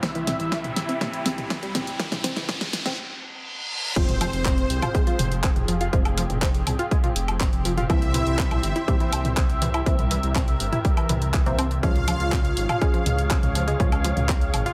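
Melancholic and dramatic, this melodic techno excerpt opens with a four-second build-up of drum fill, riser, filter sweeps and a reverse cymbal over the punchy, overdriven, up-front electronic kick, a deep house kit with fat snare, a rumbling detuned saw bass, a tight sequenced arpeggio synth, muted dub chord stabs, veiled con sordino strings, a mellow unison lead with dub echo and a bright wave-folded polysynth, before dropping at 4.0 seconds on an impact, with a swarming, very quiet drone joining at 7.2 seconds as sidechain pumping breathes through the synths, strings and bass.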